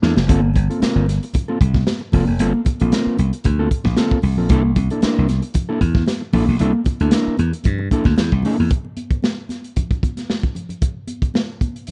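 Driving and hypnotic, this funk excerpt at 114 BPM in 4/4 opens with a drum fill from a gritty, saturated breakbeat kit with a tight kick, while a bright, punchy slap bass and a dark, clean, fingered electric guitar sit up front over Gm11 and C13 chords, high-tuned, thick-skinned congas sit faintly beneath, and at 8.7 seconds the bass and guitar stop, leaving drums and congas alone until 11.9 seconds in a rough, small-room home-demo sound with a dulled top end.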